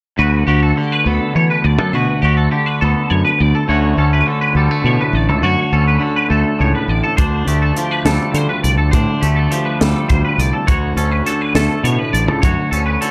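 Set in 6/8 at 69 BPM, counted in dotted quarters with a straight feel, this intricate, wistful fragment of math rock and Midwest emo is tuned slightly low to A4 = 438 Hz. Two clean, picked, twangy electric guitars sit up front from 0.2 s: one is bright and compressed, supplying the accompaniment in the lower register, while the other spins high arpeggios through an ensemble chorus. A growly fuzz bass, fingered and overdriven, fills the bottom end with a gritty, forward presence. At 7.2 s a crisp fusion drum kit arrives, its high-tuned snare, punchy kick and hi-hat ringing in a small, pumping room. The harmony drifts through lush extended chords, Gmaj9/D to Dmaj7, then F69 and back to Dmaj7, all held in a dark, warm production with light reverb.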